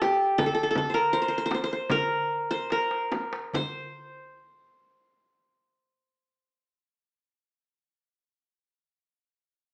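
A bright-edged qanun opens this stately Turkish makam ensemble excerpt, its plectrum-plucked triple strings sitting up front and carrying the melody between G4 and C5 with a plate reverb around it. Beneath it, a deep, large frame drum sounds close and dry under hard hands, while a small, high clay-shell darbuka with natural skin sits in the background, struck with hard hands in a live room. The straight 4/4 pulse moves between 70 and 83 BPM and slows through the opening phrase, with a drum fill starting at 2.7 seconds. The percussion stops at 3.9 seconds, leaving the qanun alone for a second phrase that runs to 7.6 seconds, cut from a longer piece. The whole takes on a warm, wet studio ambience and a small-speaker character, with the tuning set to A4 = 438 Hz.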